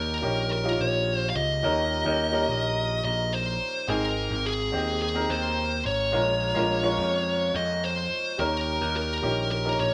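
Bittersweet and dramatic, this piano-driven pop clip at 107 BPM in 4/4 sets a dark, high-gain distorted lead guitar carrying the melody up front over a brilliant, woody upright piano and a growly, punchy overdriven picked bass, the three playing together throughout in one large studio room with moderate reverb as the chords move from Eb7 through Ab and Bbm7 back to Eb7.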